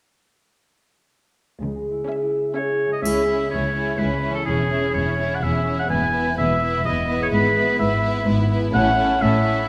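An up-front, clear oboe carries a second line from 2.5 seconds through this playful, whimsical cinematic cue in C# minor at 126 BPM in 3/4, over bright, ringing harp arpeggios and lush cello bass from 1.6 seconds, joined by a background violin melody, an expressive symphonic violin second line with portamento, smooth-topped viola accompaniment, distant double bass, and a brief close, dry triangle at 3.1 seconds, as the chords move from C#m to A in wet concert hall reverb with a magical, mischievous air.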